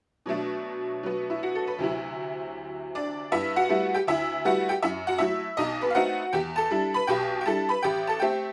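A relaxed swing at 159 BPM in 4/4, this short cut from a longer solo jazz piece in G major carries a sophisticated air, with a lone tack piano playing from 0.3 to 8.5 seconds across a span from A1 to B5. Its jangly, metallic voice sits up front with a vintage brightness, moving through extended harmonies such as Bm7, D9, G69 and B7b9 before settling on Am7. Light reverb gives the sound the feel of a live room.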